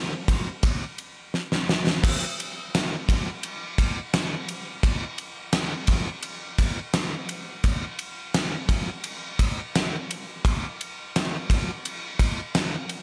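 Rock in a straight 4/4, this short excerpt taken from a longer piece carries a dreamy, hazy mood. The only part is a gated 80s drum kit, heard from 0.3 seconds to the end at 13.0 seconds, playing crash cymbal, kick drum, ride cymbal and snare drum. A drum fill from 1.3 to 2.0 seconds closes the brief opening section and leads into the longer passage that follows. The kit sits up front with a fat snare and a tight kick, its acoustic sound bright and polished within a gated stone room that lends an airy quality. Light reverb surrounds the recording, adding to the hazy atmosphere.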